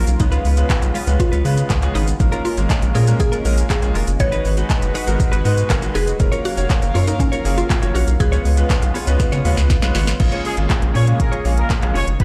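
A confident, energetic dance-pop excerpt at 120 BPM opens with a woody, mallet-like synth pluck melody coated in chorus, phaser and tape echo over bright grand piano accompaniment, a shimmering pulse-width pad with tremolo, a clean direct-recorded guitar riff in lush chorus, a deep, round analog bass and an up-front R&B kit of soft kick, sharp snare, smooth hats, handclaps, shaker and crash. The piano, pad and bass sidechain-pump through C#7, A#m7, G#m7 and F#maj7 in a big reverberant room, until a drum fill at 9.2 seconds hands the tune to a distant horn section with light vibrato at 10.5 seconds.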